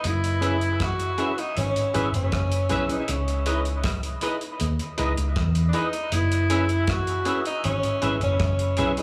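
A distant, roomy tenor saxophone leads this smooth, longing lovers rock reggae passage, carrying the solo melody up front with light vibrato and a dub echo trailing its phrases. Beneath it, a dark, foam-muted fingered electric bass sits round and punchy in the mix, while a cloth-damped acoustic drum kit supplies hi-hat, a tight kick and rim clicks with a thuddy, rolled-off top. At 0.4 seconds a bell-like tine electric piano joins with bright, direct accompaniment, alongside a clean, scooped electric guitar whose twangy stabs are coloured by ensemble chorus and dub echo. The harmony drifts between F#9sus4 and C#m9 in a straight, unhurried 4/4. Light reverb and a small room ambience give the whole cut from a longer piece an intimate, warm glow.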